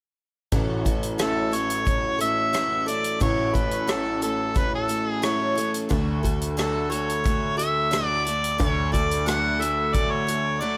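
A mellow harmonica carries the melody up front, its vintage tone marked by light vibrato, scooped notes and a touch of digital delay, entering at 1.2 seconds over a band already underway. This is a hopeful, warm slice of folk rock with a heartland rock lean, cut from a longer piece and moving in a straight 4/4. A picked twelve-string acoustic guitar supplies the accompaniment with a shimmering, octave-doubled parlour sound, bright and a little boxy, with audible finger squeak. A clear, slightly worn baby grand piano holds down the bass in its low register, while a natural country drum kit in a small room keeps time on hi-hat, rim click and a punchy kick. The harmony rests on an A6 chord before shifting to D at 5.9 seconds, all set in light reverb.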